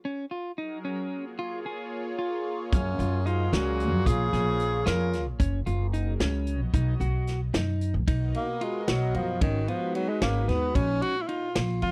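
Brooding and intricate, this progressive instrumental in 5/8 opens with picked, compressed clean electric guitar arpeggios alone. At 2.7 seconds a thumpy, woody pizzicato upright bass and a punchy, natural vintage drum kit join up front, along with a breathy, whispered tenor saxophone melody with scooped notes and a nasal, brilliant straight-muted trombone on a brief second line. From 8.1 seconds the intimate saxophone takes a jazz-style solo, all captured in a dry, close 1970s-style studio sound.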